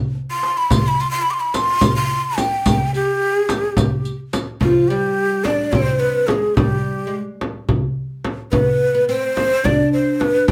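Set in a brisk 7/8 at 215 eighth-note beats per minute, this festive excerpt of a Turkish makam ensemble in G hicaz opens with a clay-shelled darbuka played with soft hands, joined almost at once by a breathy, close-miked ney that carries the melody with vibrato and tongued, slightly unsteady phrasing. At 0.7 s a deep, dry frame drum enters up front alongside a riq whose bright, saturated jingles drop out at 4.5 s. At 4.6 s a woody, fretless oud with double strings joins on a low second line as the band plays live in a small, reverberant room.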